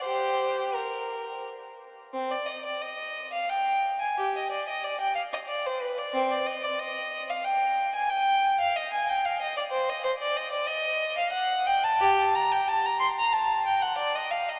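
Classical baroque-style suite movement for unaccompanied violin in 3/4, introspective and solemn, where a single rich, smooth bowed violin with vibrato plays up front with rubato at around 85-95 BPM, settling into G minor from 10.0 s, all set in a vast, echoing cathedral reverb with a small-speaker sound, cut from a longer piece.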